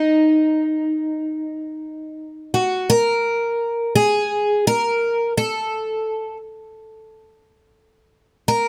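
Played in free time, this short fado fragment carries a longing, passionate mood through a lone picked twelve-string acoustic guitar, its octave-doubled strings giving a shimmering, concert-ready tone that sits up front. The line stays in a narrow register between Eb4 and Bb4, moving from an opening phrase into a second section at 2.9 seconds. Close, detailed miking and a nearly dry room keep every string's ring intimate and present.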